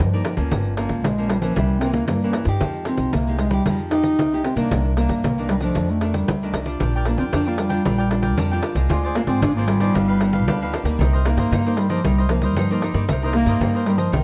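Samba and choro at 115 BPM in C minor, nostalgic and yearning, with a mellow, soft-attacked bass clarinet carrying the classical-style solo melody over dark, fingerpicked nylon-string guitar, woody pizzicato upright bass placed up front, and jingly, hard-handed pandeiro, while a crisp picked cavaquinho joins at 6.8 seconds, all in a close, detailed and nearly reverb-free sound that moves through rich extended chords before settling on Cm7 in this short cut from a longer piece.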